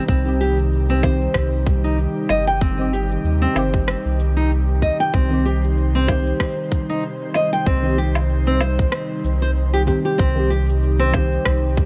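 Organic downtempo in C minor at 95 BPM with a light 16th-note swing, this hypnotic, earthy excerpt rests on a Cm chord, led by an up-front fingerpicked nylon-string guitar whose full-bodied arpeggios carry finger squeak, 12-bit sampler grit and delay. A round sine sub bass and a tight, overdriven electronic kick sit beneath layered, overdriven cabasa, woodblock and rim click, while an airy, breathy pad with chorus and sidechain pumping sustains chords. A dark, detuned chord stab with ring modulation, cassette tape colour and delay decays in the background, and the dry mix shifts into a new section at 10.2 seconds.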